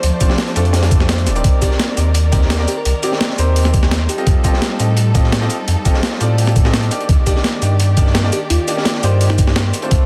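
Liquid drum and bass at 170 BPM, soulful and lush, this excerpt moves through Dm7, Cm9, F9 and Ebmaj7 over a deep, round sine sub bass and a thumpy, gritty electronic kick sitting up front, joined by a tape-warm sampler-style breakbeat kit with hi-hat, shaker and snare, plus a dark, saturated acoustic break kit with a high-tuned snare tucked in the background. A brilliant grand piano with delay carries the accompaniment while a rich symphonic string section holds bowed, vibrato-laden chords in the background, pumping against the sidechain. A sparkling, bell-like FM electric piano, treated with chorus, phaser and tape echo, voices its melody from 1.6 to 4.4 seconds and again from 7.3 seconds, all within studio reverb and a dense, heavily limited master.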